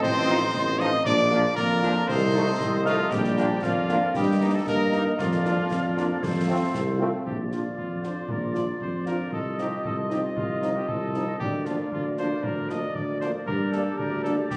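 Festive and spirited, this military-style march for wind band moves at 116 BPM in a straight 2/4 and sits in Bb major, cut from a longer piece. A clear cornet carries the melody with a soft attack and smooth top, while a distant, roomy woodwind section runs a second line alongside it throughout. In the opening half, a mellow wooden piccolo with expressive vibrato and a soft-attacked euphonium add further second lines from the background, both stopping at 6.7 seconds. The warm tuba sits up front and present on the bass, and the concert snare drum, concert bass drum and clash cymbals sound close and dry, the cymbals dark. A punchy French horn section accompanies from 0.3 seconds, and a tight, bright trombone section holds sustained chords until 7.1 seconds before the second section settles onto chords such as Bb, F7/C and Gm. A wet scoring stage reverb surrounds the band, and the phone capture in the room carries a club ambience.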